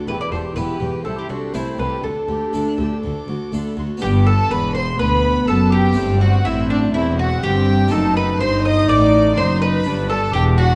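A festive, lively baroque-style concerto movement in G major at 123 BPM in a straight 4/4 opens with a violin section carrying the melody high above, its gut-string tone rich and lightly vibrated, while a close-miked, dry harpsichord with a brilliant, Italian-style bite and a viola section fill in the accompaniment. Almost at once a woody, double-strung mandolin picks out a second melody in its middle register, and a studio violin section adds a reedy second line alongside it. The low end comes from a double bass section reaching down to E1 and a nasal-toned cello section set in the background, both bowed in period style. The opening phrase moves through Em, Am/C and a Dsus4 resolving to D, then a new section from 4.0 seconds settles on G, passes through Am7/G and a tense F#dim7, and returns home to G at 9.9 seconds. A moderate recital-hall reverb surrounds the dark, warm production of this short cut from a longer piece.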